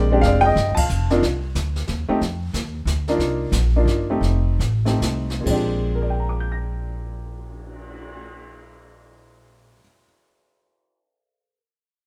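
Light reverb gives this short cut from a longer jazz piano trio piece a natural, intimate sound, with the piano and bass placed up front. The mood is swinging and sophisticated, moving in 3/4 with swung eighth notes in Bb mixolydian, at a tempo between 127 and 182 BPM that slows down partway through. The upright piano carries the melody from Bb2 to Bb6 with a woody, boxy tone and short sustain, over harmonies such as Bb13, Cm11 and F7. The upright bass is plucked on steel strings with a warm tone, while the brush kit sits further back in a small room, mixing brushed snare, hi-hat, dark cymbals with a crash and a cymbal swell, and a boomy kick. The band hits an accent together at 0.7 seconds, and the drums drop out at 8.2 seconds while piano and bass carry on, the bass stopping at 9.8 seconds and the piano continuing to the end at 10.0 seconds.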